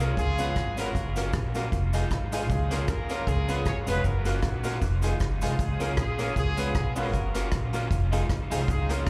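A lightly swung 4/4 ska groove at 155 BPM in Db major drives this upbeat, joyful live club excerpt, where a roomy horn section carries the melody through tube saturation and dub echo, a twangy, slightly broken-up electric guitar accompanies with spring reverb, a slightly detuned upright piano adds stabs with audible action noise, a thumpy, woody upright bass sits up front, a vintage kit with a punchy kick and rolled-off top plays hi-hat, kick and rim click, and a grainy cabasa sits in the background over a cycling Db7, Gbmaj7, Fm7, Db6 progression.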